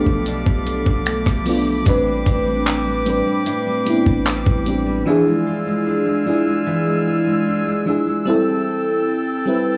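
A lush, dreamy FM electric piano with a soft pad layer and chorus provides the accompaniment in this dry, gritty late-night contemporary R&B excerpt at 75 BPM in A minor, joined by bright fingerpicked steel-string acoustic guitar arpeggios with tape echo, sustained chords from a classical-style woodwind section with light vibrato, a deep, mellow 808-style sine bass, and a compressed, dusty soul sampler-style kit of finger snaps, handclaps, hi-hat, rim click and a thumpy kick, with the bass and drums dropping out at about 5.0 seconds and the chords moving through Bm7b5, Am11, E7b9 and C6 for a sensual, small-room feel.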